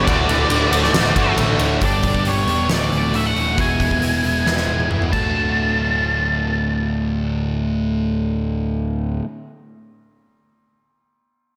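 A straight 4/4 pulse anchors this anthemic, cathartic slice of quiet-loud alternative rock, cut from a longer piece. A huge arena drum kit, with its fat snare and punchy kick sitting up front, pounds through crash, ride, hi-hat and toms before a drum fill at 4.5 seconds, and the kit stops at 5.2 seconds. Underneath, an overdriven picked electric bass growls in a low register, while a sludgy distorted guitar grinds out an up-front riff. A pair of tight distorted guitars add bright riffing in the background, one of them double-tracked and very quiet, and both stop at 2.3 seconds. Over the top, an octave-fuzz lead guitar sings a warm melody colored by slapback echo, and from 1.8 seconds a clean, twangy twelve-string electric guitar shimmers through phased, compressed arpeggios in the background. A lush hall reverb gives the whole mix a big arena sound as the chords move between D, G and E.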